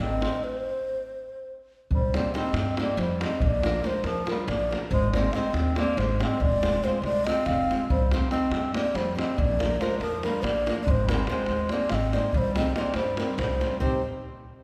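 A breathy, mellow ney with vibrato and a soft attack sits up front in this restless, virtuosic Balkan wedding-band excerpt in 7/8, carrying the melody while a dark, distant clarinet plays a second line beneath it. Pizzicato upright bass with a woody, growly tone, bright fingerpicked flamenco guitar and a tight davul fill out the band. After a stop from 0.4 to 1.9 seconds, the full group drives through a minor-key cycle moving from Cm through Bb and Ab to Fm, all set in the lush reverb of a large hall.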